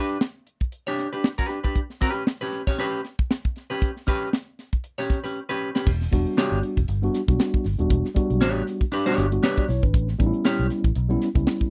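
A lightly swung sixteenth-note funk groove at 117 BPM in E dorian drives this cool, dry 1970s-style studio excerpt, where a clean, hollow-bodied electric guitar plays accompaniment over tight drums with bright cymbals and a high-tuned snare until a drum fill at 5.4 seconds brings in a round, foam-muted fingered bass, mellow tine electric piano stabs through built-in speakers, and a jingly tambourine in the background, moving from G/D and G to Em7 and A9.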